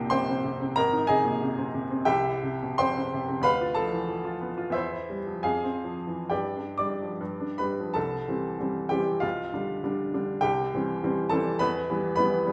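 In a rubato 2/4, the pulse stretches and gathers anywhere between 58 and 108 BPM, giving this romantic character piece for solo piano a passionate, brooding restlessness. The bright upright piano plays alone for the whole 12.5 seconds, ranging from Ab1 to D6, and its tone is woody and brilliant, with audible action noise and a short sustain that keep it intimate and up front. Though the music sits in C major, it opens on C minor and Ab harmonies before turning to C, then passes through F minor and G toward a fresh start on C at 8.0 seconds. The second passage moves between C and G7 over B before ending on E minor, as the recording is cut from a longer piece. A wet recital hall reverb surrounds the instrument, and the listener seems to be placed further back in the room.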